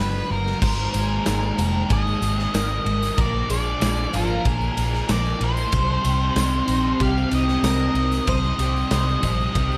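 A straight 4/4 pulse at 94 BPM drives this brooding, hazy shoegaze and dream pop excerpt, where a round, foam-muted bass sits up front under a big-room drum kit with punchy kick entering at 0.5 s, a jingly tambourine in the background, an octave-fuzz lead guitar with slapback echo carrying the melody, a shimmering, octave-doubled twelve-string acoustic picking arpeggios through analog chorus, and two dark background riffs, one from a slightly broken-up small old amp with reverse reverb and one from a thick fuzz guitar with chorus, moving through G, Abadd9, Bb7 and Cm in a moderate studio reverb.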